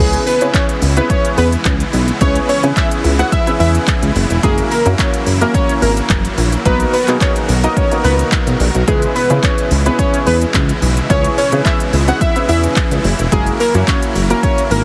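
A fat, full-bodied analog lead carries the melody from the start, its detuned sawtooth and square tones with a sub octave, chorus and filter sweep giving it a mellow, rounded edge while sidechain pumping makes it breathe against the beat. This is a driving, energetic dance-pop drop at 108 BPM in 4/4, set in C# dorian and cut from a longer piece, with the harmony moving through C#m7, F#7 and Bmaj7. Underneath, a glossy, retro chorused synth bass sits up front, its pulse-wave and sawtooth tones shaped with a filter pluck, while a warm concert grand piano adds intimate accompaniment with audible action noise and long sustain. Huge, airy supersaw chords fill out the harmony with bright, detuned unison layers and a noise layer, pumping in time with the rest of the synths and piano. A punchy deep house drum kit of kick drum, handclaps, hi-hat and shaker enters at 0.1 seconds, its smooth hats and small-room character pushed up front. 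The mix has light reverb and a heavily compressed, radio-ready sound.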